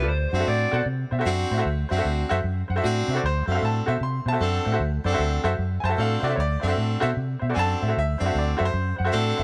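Swaggering and soulful, this short blues excerpt cut from a longer piece swings along at 152 BPM in 4/4, set in D mixolydian with a D7 chord sounding at the start. A raw garage guitar carries the melody with a warm, overdriven, lo-fi bite, but only for the opening 0.8 seconds. A bright upright piano supplies accompaniment throughout, its woody, brilliant tone sitting up front with short sustain. A saxophone section adds stabs with a soft attack and jazz-style vibrato, giving a mellow ensemble colour. Underneath, a vintage muted fingered electric bass lays down a dark, round, punchy foundation that sits prominently in the mix, and the whole performance is framed by light reverb and small room ambience.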